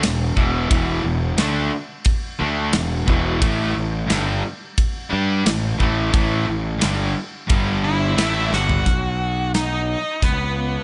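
Heard in a small room with a dulled top end, this confident, driving classic rock excerpt moves at 88 BPM in straight 4/4, tuned to A4 = 438 Hz. Two picked guitars, one crunchy and overdriven, the other bright, compressed and scooped, play a riff over E5, A5 and G5 chords, backed by a growly, punchy fuzz bass and an up-front big rock drum kit with an airy, polished sound, a punchy kick, a medium-tuned snare, hi-hat, ride and toms. A dark octave-fuzz lead guitar with wah enters at 7.8 seconds, a drum fill arrives at 8.5 seconds, and the riff guitars stop at 8.8 seconds as the lead carries the melody over B and Bsus2.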